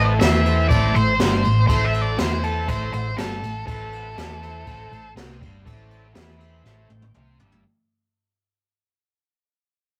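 A straight 4/4 groove from a jazz brush drum kit with a boomy kick and dark cymbals carries this brooding, heavy blues rock and southern rock power-trio fragment, where a bright, double-tracked distorted guitar riff plays alongside a round, punchy hollow-body bass that sits up front, a dark octave-fuzz lead melody runs from 0.2 to 5.1 seconds, and a thick, gritty overdriven tonewheel organ with slow rotary speaker holds sustained chords in the background before organ and drum fills close out the fade by 7.6 seconds in a rough rehearsal-room sound with light reverb.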